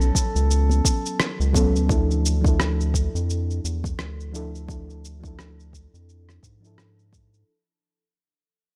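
A round, up-front analog bass with tube saturation anchors this relaxed sunset chillout excerpt, joined by a mellow, warbling FM electric piano with chorus and delay, an overdriven deep electronic kick and gritty shaker and rim click under studio reverb, while a dark, boxy concert grand piano plays a brief delayed melody until 1.2 seconds and very quiet congas appear between 0.7 and 1.7 seconds, all within a dry, gritty recording that fades out throughout.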